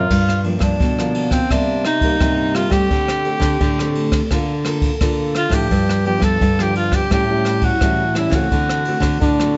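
Lively and yearning, this samba and choro fragment sets a breathy, whispered alto saxophone melody with light vibrato over two fingerpicked nylon-string guitars, one playing classical accompaniment and the other a deep bass line, both with audible finger squeak. A brushed jazz kit enters at 0.1 seconds with dark cymbals, rim clicks and a boomy kick, sitting up front in an airy small room, while a mellow trombone with vibrato and scooped notes appears only briefly and returns at 9.2 seconds. The harmony moves from Gm7 through Cm7 and Bbmaj7/D toward A7 and D7, bathed in light reverb with a soft, rolled-off top.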